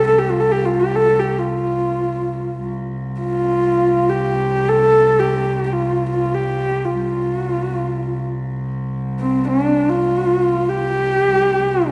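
Proud and galloping in spirit, this short cut from a longer Mongolian folk piece unfolds in free time in a C zhi mode. A dark, husky horsehead fiddle carries the melody up front from 0.0 to 11.9 seconds, its bowed horsehair strings giving a woody, boxy voice with soft attacks, vibrato and portamento between notes. Beneath it, a single bowed cello holds a low C drone throughout, its tone rich and earthy with a biting edge and a smooth top. The fiddle sits clearly above the cello in level, keeping the melody in the foreground while the drone lends a grounded weight. A wet recital-hall reverb, recorded in a church or concert hall, surrounds both players with a lingering sense of space.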